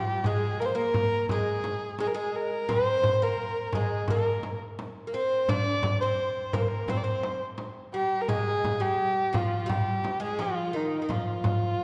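Longing and hypnotic, this short Turkish makam ensemble passage in straight 4/4 sets a dark, woody kamancheh melody, bowed by one player with vibrato and portamento up front, over a bright, fretless oud plucked with a plectrum on double strings as a deep second line. A crisp, close, dry metal-shell darbuka played with hard hands sits in the background beside a small, compressed, saturated frame drum, inside the long reverberation of a concert hall.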